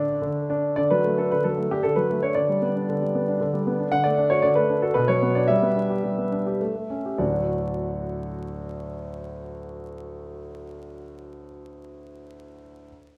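In a rubato 3/4 at 99 to 118 BPM, this short cut from a cheerful, elegant classical-period sonatina in D major unfolds on a solo concert grand piano, easing into a slowdown between 3.1 and 7.2 seconds. The piano sits up front with a clear, natural tone, deep bass and long sustain, moving from D through G over D, B minor, G and A7 before settling back on D. A wet recital hall reverb surrounds the instrument, and a vinyl crackle runs beneath it.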